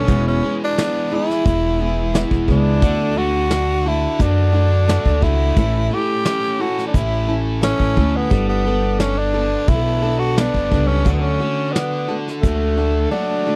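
A straight 4/4 pulse at 87 BPM from a soft brushed drum kit and a woody, thumpy pizzicato upright bass on gut strings carries this hopeful folk rock and heartland rock excerpt through E, D, A, Gadd9 and D, as a boxy old ladder-braced acoustic guitar is picked with audible finger squeak, a biting, double-tracked overdriven electric guitar plays a riff, and a gritty, raspy tenor saxophone sings the melody up front with vibrato, all in a dry, close 1970s-style studio sound that reaches a brief break at 13.1 seconds.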